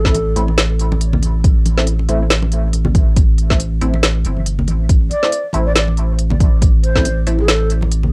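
This dark, cavernous slice of deep dubstep opens at once with a brief breathy ney phrase over a thick, saturated sine sub bass and a layered electronic kick, the bass and kick sitting up front. At 139 BPM in A minor, with a half-time feel and swung sixteenths, the groove rests on a single A minor chord. A deep house kit adds a woody snare and smooth hi-hats, while close, hard-handed congas bring bright acoustic snap. Filtered dub chord stabs, nasal and detuned sawtooth tones with a moving notch, phaser, analog chorus and dub echo, pluck short and muted beneath. The end-blown ney, with vibrato and tongued notes, returns at 5.1 seconds, its cane tone carried on cassette grit and dub echo in a dry, home-taped sound.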